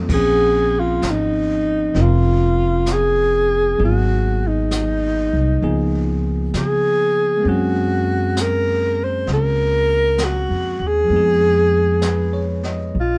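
A wistful, melancholic jazz ballad in Bb minor moves at a slow 65 BPM in 4/4, its eighth notes gently swung, in this short passage cut from a longer piece. A breathy alto saxophone carries the melody up front, its mellow subtone and vibrato captured close and intimate. Beneath it, a bell-like tine electric piano supplies clean, bright accompaniment, while a woody, growly upright bass played pizzicato sits prominently in the mix. A jazz brush drum kit sits mid-forward at a quieter level, pairing a high-tuned snare and boomy kick with dark cymbals and a rolled-off top. The band sounds as if playing live together in one room with light reverb, the harmony drifting from Bbm7 through Abm9, Db13 and Gbadd9(#11) before settling on Fm7b5 at 11.1 seconds.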